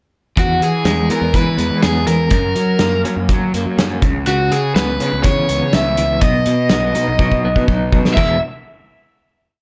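Jangly and carefree, this short indie rock piece moves at 123 BPM in a straight 4/4, set in E lydian over a verse that cycles through E, F#, C#m7 and B. Up front, an overdriven, compressed electric guitar carries the melody in short, song-like motifs, its tone thickened by a slapback echo. Beneath it, a second electric guitar played through a small old amp picks slightly broken-up arpeggios as its riff, shimmering with tremolo. A fuzz-drenched picked bass anchors the low end with octave lines, while a loose acoustic kit drives a pop groove with a tight kick, a medium-tuned snare, dark cymbals and a pumping room sound. A drum fill from 7.2 to 8.2 seconds leads into a final E chord at 8.2 seconds, all wrapped in a dark, warm production with light reverb and studio ambience.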